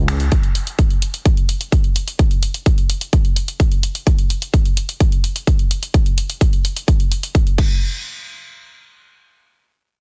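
A straight 4/4 pulse at 128 BPM drives this anthemic, triumphant slice of festival progressive house, cut from a longer piece. A layered big-room dance kit of crash cymbal, finger snaps and hi-hat, with soft clipping on the snare, enters at 0.1 seconds, and a punchy, tape-warm electronic kick joins up front at 0.3 seconds, both carrying studio reverb. The two drum parts stop at 7.7 seconds, just before the next section begins, all within a dense, heavily limited modern master.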